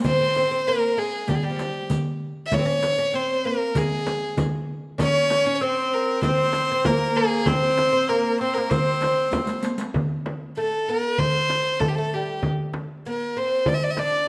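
A crisp, high metal-shell darbuka drives a straight four-beat groove over a deep frame drum and a band-limited riq with bright jingles set in the background, and a drum fill at 9.3 s leads into a new section at 10.0 s in this passionate, festive excerpt from an Arabic maqam ensemble piece. Up front, an intimate bowed violin carries the melody with light vibrato, a soft attack and an airy sul tasto tone, while a woody, plectrum-plucked fretless oud with double strings plays a second line beneath it. From 5.0 s a mellow, distant cor anglais adds a classical-style second voice for a few seconds, all heard through close, detailed microphones in a moderate recital-hall reverb.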